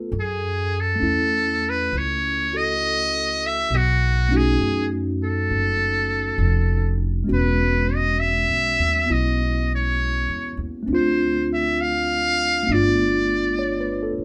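A mellow, clean tine electric piano opens this melancholic, intimate jazz ballad at a slow 67 BPM with a gentle swing, joined at once by a woody, thumpy pizzicato upright bass on gut strings. A metal-muted trumpet carries the melody from 0.2 seconds, buzzy, thin and brilliant with vibrato, sitting forceful and up front yet with a distant, roomy cast. The chords move from F#m7 through B9 and E69 to Dm7 and G9 in a moderate club reverb, and the passage is cut from a longer piece.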